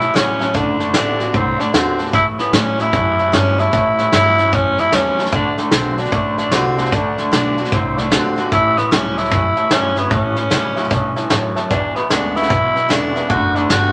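Retro and upbeat, this swung rockabilly fragment puts a breathy, raspy tenor saxophone up front on the melody, backed by a soft brush drum kit with a punchy kick and thumpy pizzicato upright bass on gut strings. A twangy electric guitar through a small old amp plays a slightly broken-up riff with tremolo, while a bright, full-bodied steel-string acoustic guitar, with audible finger squeak, and a dark, mellow upright piano sit in the background over A7, D7 and E7 changes. Moderate studio reverb gives the mix some space, though lossy compression artefacts add a lo-fi edge.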